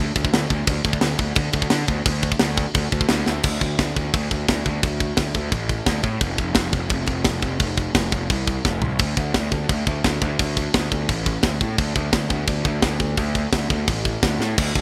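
A bright, 1980s-style digital production with light reverb frames this heavy, aggressive metal excerpt in D minor at 173 BPM, where a growly, overdriven fuzz bass picked from F1 to D3 sits up front beside a tight, acoustic drum kit with bright cymbals, a medium-tuned snare and a tight kick, joining at 0.2 seconds and breaking into fills around 3.3, 8.6 and 14.4 seconds.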